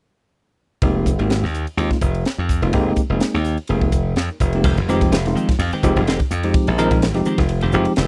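Riding a lightly swung 16th-note groove at 126 BPM in 4/4, this slick, intense electric jazz fusion excerpt in F minor sits on an Fm11 chord, with a bell-like tine electric piano, a glassy, punchy slap bass and a crisp, polished fusion kit with a high-tuned snare and punchy kick all starting at 0.8 seconds, before a dark, compressed clean electric guitar with analog chorus adds picked stabs from 4.6 seconds in a dry, close 1970s-style studio sound.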